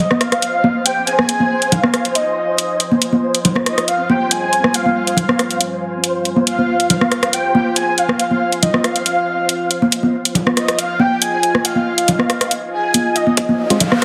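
A cavernous, heavily compressed radio-like sound bathed in spring reverb opens this 14-second excerpt of deep dubstep in F minor, moving at 139 BPM in a heavy half-time feel over a single F minor chord. Up front, a breathy, flute-like synth lead carries the melody between Eb5 and Ab5, its soft, sustained tone colored by vibrato, ensemble chorus and dub echo. Beneath it, a deep, moody ambient pad holds dark sustained chords under a filter sweep, while a flickering, grainy granular texture hovers on C5 with a mellow glow. An overdriven garage drum kit of hi-hat and rim click sits prominently alongside soft-handed, band-limited vintage congas. Near the close, a tight electronic kick enters at 13.4 seconds in the background, a riser begins at 13.5 seconds, and a hollow, percussive organ stab with tape coloring lands briefly at 13.7 seconds.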